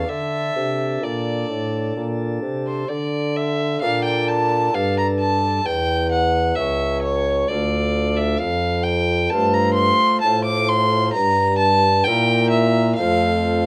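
In a straight 3/4 at 65 BPM, this introspective, flowing baroque-style sonata movement in D minor, cut from a longer piece, features a single nasal, gut-string period violin with light vibrato carrying the melody up front over a pipe organ's bright, sparkling flute stops and a mellow, distant bassoon bass line, all in light reverb as the harmony moves through C#dim, Dm and F.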